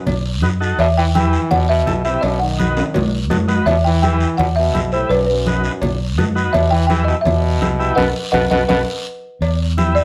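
A driving, fiery cumbia groove at 167 BPM in E harmonic minor is carried by up-front, round and dark fingered electric bass, ringing congas set in the background, raspy close guiro, and vintage metal-shell cowbell and timbales, with drum fills from 2.2 to 3.7 seconds and 8.3 to 9.4 seconds. A woody, rustic folk marimba with medium mallets leads the melody, a brilliant, punchy trombone with vibrato carries a second line until 8.8 seconds, and a buzzy, overdriven combo organ with heavy vibrato fills in the accompaniment. The band hits an accent from 8.0 seconds as the chords swing between B, B7 and Em, all heard from further back in a studio room with a short, wet reverb, in this brief cut from a longer piece.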